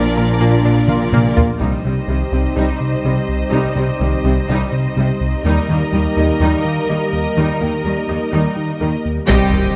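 A hybrid orchestral and electronic film score cue, cut from a longer piece, with a relentless, tense mood in a straight 4/4 pulse. A smooth, nasal synth bass riff drives from the start, joined by a very quiet analog pluck playing detuned, bright arpeggios with a filter sweep and phaser, while a hollow, flute-like pad with chorus sustains chords in the background. Lush bowed strings fill out the texture: a warm violin section carries a second line, violas add expressive portamento accompaniment, and rich cellos and distant double basses anchor the low end. A clear, intense violin melody sounds only briefly at the opening and again at 9.3 seconds, when mellow, punchy French horns return with sustained chords. Heavy-stick taiko drums deliver a fill from 0.9 to 1.6 seconds and come back for a full-band accent at 9.3 seconds, marked by a huge, very quiet impact. A moderate scoring-stage reverb gives the ensemble a spacious, cinematic sheen as the harmony moves from Bb to Cm and on to Eb.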